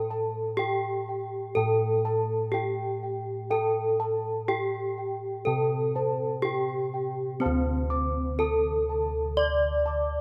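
Javanese gamelan at a slow 62 BPM in 4/4, ceremonial and serene, heard in a short passage cut from a longer piece. A bronze metallophone struck with a horn mallet carries the dark melody up front, its paired tuning producing shimmering beats. Mellow bossed gongs with padded beaters hold the bass, while round, beating bossed gongs play arpeggios up front and a soft metallophone with padded disc mallets adds arpeggios in the background, all set in a rough home demo mix with light small-room reverb.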